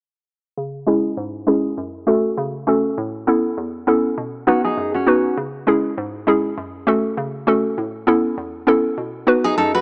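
Hypnotic and bouncy, this dancehall excerpt moves at 100 BPM in C# minor with a light swing, cycling through C#m, F#m, Aadd9 and B as a filter sweep runs across the whole passage. A hollow, dark square-wave pluck with a noise layer, fast attack and chorus carries the accompaniment up front from 0.6 seconds, while a full-bodied, fingerpicked nylon-string guitar adds brief arpeggios with audible finger squeak at 4.5 and 9.4 seconds. The sound is dry and gritty, with light studio reverb and a small-speaker character.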